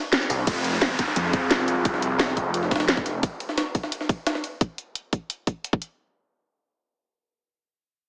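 A snarling, growling distorted saw bass, detuned and overdriven, surges between 0.3 and 3.2 seconds through this tense, aggressive excerpt of dark technical drum and bass at 174 BPM in F minor. It is driven by an up-front drum and bass kit with cracking snare and bright hats, a tight, tape-tinged electronic kick, and a gritty, pitched-up jungle sampler-style kit in the background. Meanwhile a deep, moody ambient pad with chorus and sidechain pumping moves through a filter sweep alongside an electronic downlifter, all in a wet digital room reverb with a heavily compressed, small-speaker radio sound.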